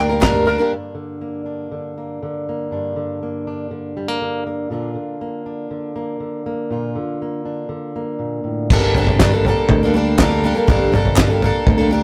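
A bright, shimmering twelve-string acoustic guitar, octave-doubled with finger squeak on fresh strings, opens this wistful, bittersweet indie folk excerpt in G minor at 120 BPM, joined in a brief burst by plunky, twangy banjo arpeggios, warm fingered electric bass, a thuddy cloth-damped drum kit and hollow group handclaps. From 0.7 seconds a dark, full-bodied fingerpicked steel-string acoustic guitar carries the Gm-to-Bb accompaniment alone. At 8.7 seconds the arrangement builds as the twelve-string, bass, and drums with fat snare and dark cymbals return over a Gmadd9 chord, with the handclaps rejoining at 9.2 seconds, all in a rough rehearsal-room sound with tube saturation and moderate small-room reverb.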